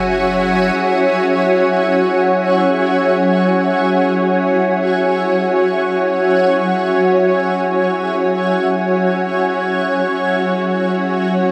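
Reflective and spacious, this ambient excerpt floats in free time inside a vast, echoing space, its long reverb tail hanging over everything. A cloudy, blurred granular pad sits up front with full-bodied, detuned sustained chords from F#4 to G#5 across the whole 11.5 seconds, while a round, deep analog bass sounds only a brief low F#1 through 0.7 seconds. Beneath it, a very quiet, string-like bowed drone between F#3 and F#4 enters at 0.1 seconds, its bright, tense sawtooth tone colored by phaser and vibrato, all resting on an F#7 chord with its third omitted.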